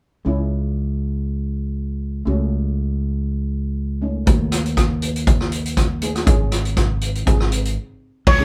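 A bright, growly fingered electric bass sits up front in this tense, dramatic calypso excerpt at 120 BPM in C# minor with a light swing, playing under a shimmering steel pan accompaniment through C#m, F#m/C#, D#dim and G#sus4 to G#, while a boomy-kicked street-band drum kit with crash, hi-hat, kick and rim click joins at 4.3 seconds, and after a short break at 7.8 seconds a second steel pan struck with medium rubber sticks takes the melody alongside a raspy guiro at 8.3 seconds, the band playing live in a small room.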